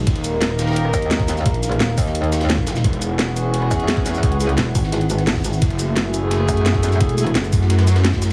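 A straight 4/4 groove at 173 BPM drives this dark, aggressive technical drum and bass excerpt, built on a knocking electronic kick and a drum and bass kit of cracking snare, rim click, shaker and bright hats, with a gritty, rolled-off breakbeat kit sitting in the background; beneath them, two up-front basses play together: a metallic, wobbling FM bass and a thick, detuned saw bass with overdrive and sidechain pumping. Above, a deep, moody analog pad also pumps, and a brass ensemble with light vibrato adds dub-echoed stabs, the whole mix squeezed into a heavily compressed, radio-like sound with light small-room reverb.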